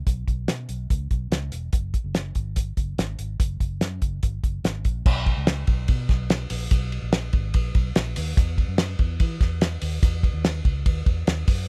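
This short excerpt of jangly indie pop has a close, dry sound with little reverb, and a youthful, bright mood set over a straight four-beat pulse. A cloth-damped acoustic drum kit comes in at 0.1 s and sits up front, thuddy and smooth, with a fat snare, a tight kick, and crash, ride and hi-hat cymbals that sound dark under a rolled-off top. Beneath it, a vintage fingered electric bass plays through the whole passage, amped and foam-muted, with a round, punchy tone that reaches from E1 up to E3. The piece moves into a new section at 5.1 s, which carries on until the cut at 11.7 s.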